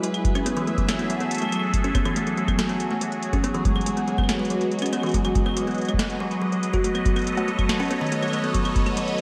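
A woody, bright kalimba sits up front in this intricate, eerie IDM fragment, plucking short arpeggios that trail off through a delay. Alongside it, equally up front, a detuned sawtooth pad with an airy noise layer holds sustained chords, swirling through phaser and chorus with a slow attack and long release. A booming analog drum machine supplies claves, cowbell, metallic hi-hats and a tonal snare, all muffled by low-pass filters and treated with gated reverb and delay. A deep electronic kick enters at 0.2 s and stays prominent in the mix. The harmony moves from F#m9 to a rootless Emaj7 and then B9, wrapped in a lush hall reverb and a bright 1980s-style digital production.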